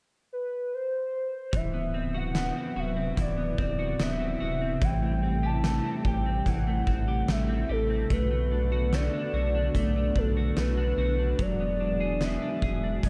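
A warbling, nostalgic lead with vibrato, portamento, chorus and analog delay floats in alone at 0.3 seconds, and at 1.5 seconds this hazy, ethereal 73 BPM dream pop excerpt blooms as a mellow detuned sawtooth pad with chorus settles in the background, a clean picked electric guitar spins arpeggios through analog chorus and delay, a round sine sub bass sits up front, and an oversized, low-tuned acoustic kit thuds with a boomy kick and fat, gritty snare in a big pumping room, all carried over a D13, Am7, Bm7 and E9 progression in a lightly reverberant, echo-heavy mix.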